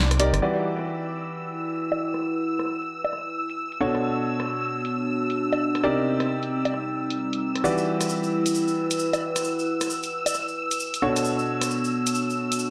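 A skippy two-step garage groove at 133 BPM in E minor swings its sixteenths, as a punchy, tape-warm analog drum machine of bongos, hi-hat and rim click opens with a fill and a band accent before a filter sweep runs over the drums from 0.4 seconds, with low-pass filtering on hats, snare and percussion. A clear, smooth concert grand piano sits up front with deep-bass stabs through low-pass filtering and analog delay, over silky string-machine chords with ensemble chorus and a dark, nostalgic, lo-fi pad that warbles through chorus and its own reverb. A grainy, distant cabasa joins at 7.6 seconds as the soulful Em7, Bm7 and Cm7 changes return to Em7 and Bm7, all in a dry, gritty hardware sound cut from a longer piece.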